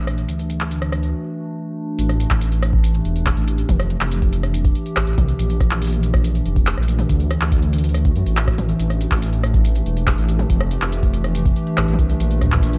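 IDM with an eerie, melancholic cast, this dark, lightly reverberant cut from a longer piece sets a warbling, lo-fi pad of slow-attack sustained chords, softened by chorus, over a deep, rumbling detuned saw bass that sits up front with tube-saturated grit. An analog electro drum machine brings metallic hats, handclaps, rim clicks, shaker and toms, filtered and touched with digital delay, and a short break arrives at 1.1 seconds. A tape-warm electronic kick enters at 2.3 seconds as the chords cycle through D, A5, Fmaj7 and Bbmaj7.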